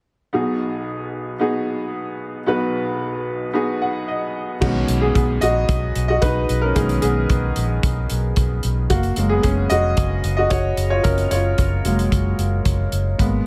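Piano-driven pop at 112 BPM in 4/4 with a straight, uplifting feel, tuned slightly low to A4 = 438 Hz. It opens on a clear, woody upright piano that sounds slightly detuned and boxy with long sustain, playing alone over a B6 chord until a fill at 3.5 seconds leads into its solo. At 4.6 seconds a round, punchy, foam-muted vintage electric bass and a smooth, dark country drum kit with a tight kick, hi-hat and crash cymbal join, moving toward F#add9 in a small room with light reverb.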